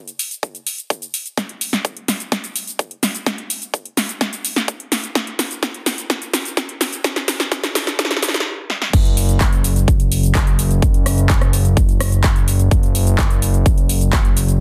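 A layered big-room dance drum kit opens this festival progressive house excerpt, with a punchy snare, metallic hi-hats, handclaps, rim clicks, shaker and crash cymbal set up front. A punchy electronic kick, filtered to trim its low end, joins at 0.4 seconds as the anthemic build-up gathers energy through a long drum fill. Everything halts briefly at 8.5 seconds before the euphoric drop lands at 8.9 seconds. There a fat analog bass enters, a detuned blend of sawtooth and square waves that sounds nasal, saturated and evolving, with a fast attack and sustained notes that pump with sidechain compression. Light reverb and a dense, heavily limited modern master keep the straight groove tight and forceful until the cut.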